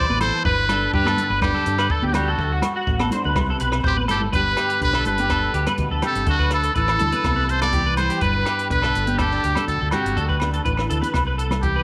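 A straight 4/4 groove at 123 BPM rides on a compact cocktail drum kit with hi-hat, rim click and a punchy kick, while congas and ringing agogo bells sit in the background of this carefree, joyful highlife guitar band excerpt in G major. Up front, a brilliant, buzzy trumpet with a metal mute carries the jazz-style solo melody with light vibrato and tape echo. A slightly broken-up, twangy electric guitar plays arpeggios through ensemble chorus and tape echo, a fingerpicked nylon-string guitar with audible finger squeak adds accompaniment, and a round, dark fingered bass anchors the Gadd9, D and Cmaj7 changes, with a drum fill at 4.0 seconds leading into the second section.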